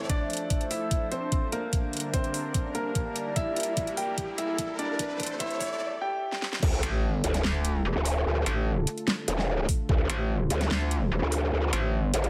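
Heavy wobble dubstep in a menacing, chaotic half-time feel, this cut opens with a clear, intimate concert grand piano carrying the melody up front, its action noise audible, over a detuned supersaw pad, a lo-fi warbling pad with phaser and chorus, and a background riser as a filter sweep and drum fills build toward the drop. At 6.6 seconds the impact hits and a saturated, growling bass with a formant filter takes over alongside a metallic FM wobble bass, both bright and overdriven. A knocking kick and a kit with a huge snare and metallic hats drive throughout, with the kick dropping out after 6.7 seconds except for a brief return at 9.7 seconds.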